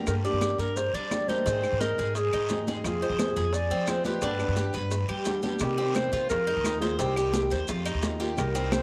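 A straight 4/4 groove at 174 BPM drives this nostalgic excerpt of Cuban son and guajira, where a mellow, classical-style clarinet carries the melody over metallic, double-strung tres arpeggios, a fingerpicked flamenco guitar with audible finger squeak in the background, and a thumpy pizzicato upright bass up front. Bright, hard-hand congas in a distant large room join a percussion bed of tight, saturated bongos, woody claves, a raspy vintage guiro and grainy maracas. The harmony moves from Gm through Ab, Fm and G before settling into Cm and Fm7 at 5.6 seconds, all under a moderate plate reverb.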